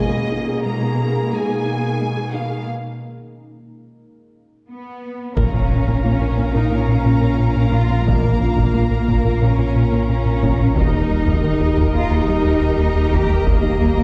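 A wet scoring-stage reverb heard from further back in the room frames this tense, relentless hybrid orchestral and electronic film cue in Bb phrygian at 89 BPM, where a rich, lush violin section sings a brief distant melody over a smooth viola section, a warm cello bass, a moody detuned ambient pad and a soft, round pluck arpeggiating through chorus and digital delay, before at 5.4 seconds a huge, dark impact ushers in a rubbery, nasal square-wave bass riff, a deep sine sub bass, a very quiet woody double bass section, a darker, expressive second violin line and hard-stick taiko drums playing in the background.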